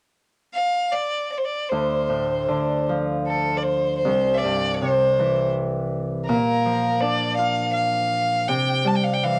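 This Celtic folk slow air, a haunting and mournful fragment cut from a longer piece, moves in a free, rubato 3/4 at roughly 76-83 BPM in D minor, tuned to A4 = 444 Hz. A single bowed fiddle carries the melody from 0.5 s, its rich, focused tone touched with light vibrato and placed up front. At 1.7 s a fingerpicked Celtic harp joins in accompaniment, spanning the low and middle register, its ringing acoustic strings given a cassette-tape coloring. The harmony settles on Dm7 as the harp arrives, then moves through C and Bb before returning to C. Both instruments sit close to the listener in a modest booth ambience, with the homespun character of a home recording made on cassette.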